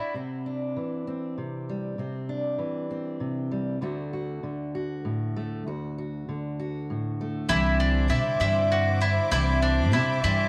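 A gentle, straight 6/8 lilt carries this nostalgic, hopeful folk excerpt. A dark, fingerpicked steel-string acoustic guitar carries the opening over Cadd9 and D chords, up front with audible finger squeaks, after a brief touch of twelve-string guitar and mandolin at the very start. At 7.5 seconds the shimmering, octave-doubled twelve-string guitar and round mandolin arpeggios return, joined by a growly, thumpy pizzicato upright bass and a soft sul tasto chamber string section with light vibrato in the background to fill out the sound. The fingerpicked guitar drops away at 9.3 seconds, all within a moderate echo-chamber reverb.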